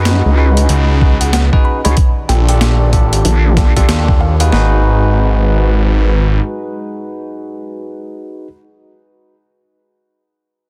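A swaggering, gritty glitch hop drop at 94 BPM with a swung feel in G# phrygian opens on a dark analog pad in the background, bell-like tine electric piano stabs with dub echo, and a nasal vowel-sweep wobble bass up front, joined by an overdriven, pitched-down boom bap sampler kit with a thumpy kick and high-tuned snare, a swirling detuned saw bass through a phaser from 0.7 s, and a faint woody wave-folded pluck melody with 12-bit grit from 1.2 s, while the pad and electric piano pump over chords from C#9sus4 to D#maj9#11 before a band accent at 3.9 s and a shift to G#m7 at 4.5 s in a dense, heavily limited mix.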